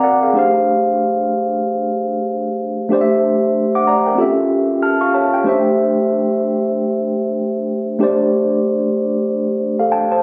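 A mellow tine electric piano opens this short R&B cut alone, sounding clean and up front with a late-night, smooth mood. Played solo at 94 BPM in 4/4 with a swung sixteenth-note feel, it sits in D minor and spans from A3 to F6. A brief piano fill starts things off, and the harmony moves through Gsus2, C13/A and A7b13 before settling on Dsus2 at 5.5 seconds. Another fill arrives at 9.6 seconds, carrying the passage to its end at 10.2 seconds. Captured on a phone in the room, the recording carries light reverb and a digital ambience that give the direct piano tone a soft halo.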